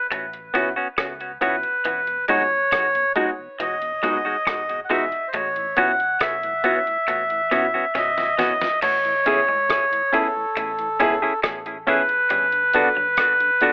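Romantic and smooth, this lovers rock reggae fragment at 69 BPM sets a reedy, breathy melodica melody with tape echo up front over a bright, twangy tremolo guitar riff, a dark foam-muted bass in the background, a crisp 8-bit drum machine with a thumpy kick and a fill at 8.0 seconds, an intimate grand piano with audible action noise, clean hollow-body guitar stabs, and a very quiet tonewheel organ through a rotary speaker entering at 2.1 seconds, all in a rough home-demo mix with a telephone-like tone and light reverb as the chords move from A69 and Emaj9 to Amaj7 and Gmaj7.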